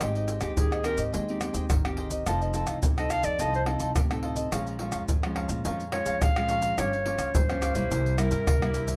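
A warm, classical-style clarinet sits up front and carries the melody from 0.6 seconds, leading this bittersweet, nostalgic samba and choro fragment in F minor at 106 BPM, cut from a longer piece. Beneath it, a crisp picked cavaquinho and a full-bodied fingerpicked nylon-string guitar with audible finger squeak supply the chords, while a woody, growly pizzicato upright bass anchors the low end. Maracas, a tight surdo, pandeiro and tamborim sit close and dry with soft hands, and a small room adds a moderate reverb to the whole.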